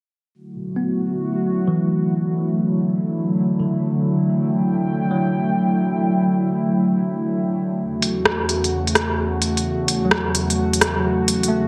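A warbling, detuned pad of sawtooth and triangle tones sits up front in this melancholic, rainy future garage excerpt, holding sustained Em11 chords with a slow attack and chorus-tinged haze. A clean tine electric piano enters at 0.8 s, low-passed and trailed by dub echo, while filter sweeps pass over both parts and the harmony shifts to F#m/E around 7.8 s. At 8.0 s a crisp, layered garage kit arrives with hi-hat and rim click, swung on the sixteenths at 129 BPM, all set in a lush hall reverb under a heavily compressed radio-like sheen.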